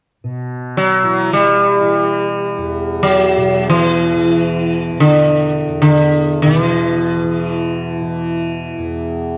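Meditative and solemn, this short excerpt of Indian classical music in free time unfolds in raga Bhimpalasi on E, tuned to A4 = 444 Hz, with a softly plucked, buzzing tanpura drone between E2 and E3 sounding from 0.2 to 9.4 seconds beneath an up-front, plectrum-plucked sitar melody whose round tone and ringing sympathetic strings move between D3 and G3, all set in a moderate scoring-stage reverb within a dark, warm production.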